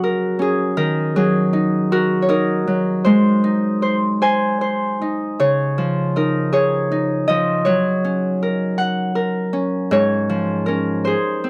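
A children's lullaby in 6/8 at a slow, rubato 53 BPM in Db major, sleepy and tender in mood. A solo Celtic harp, fingerpicked and ringing, sits up front across its full range from Ab2 to Ab5, moving through chords like Gb, Ebm, Ab and Dbadd9 before settling on Db/Ab near 9.9 seconds. The dry, close 1970s-style studio sound is touched with light reverb, and this 11.5-second passage is cut from a longer piece.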